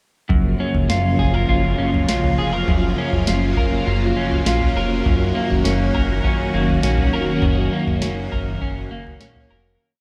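A phased string machine stands up front in this floating, ethereal dream pop piece, its bright, swirling sawtooth chords sustained as a soft-attack pad and bathed in ensemble chorus, phaser and shimmer reverb. Beside it, a slightly broken-up electric guitar plays a picked, compressed fingerpicked roll pattern of arpeggios, also up front, colored by analog chorus, delay and shimmer reverb. Underneath, a dark, glossy chorused synth bass holds a steady eighth-note line with an evolving pulse-wave and sawtooth tone and a moving notch. A soft vintage rhythm box keeps a slow tom and kick pulse, with a deep kick and crisp snare. The harmony drifts from F#maj7 to D#m7 at 5.1 seconds, and the whole dreamy, reverb-soaked mix fades out from 7.4 seconds to its close near 10 seconds.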